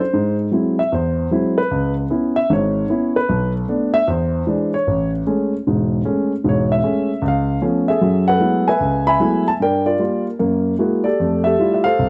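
Solo jazz piano at 152 BPM in 4/4 with a swung eighth-note feel, this sophisticated, warm fragment of a longer piece moves through rich harmony such as C#m7, Amaj7 and F#m11, spanning E1 to B5 on a dark concert grand. The tone is mellow and intimate, with deep bass and audible action noise, captured up front in a dry, close 1970s-style studio sound. After the opening passage, a new harmonic turn begins at 8.0 s and runs through 12.1 s, settling onto Fmaj9.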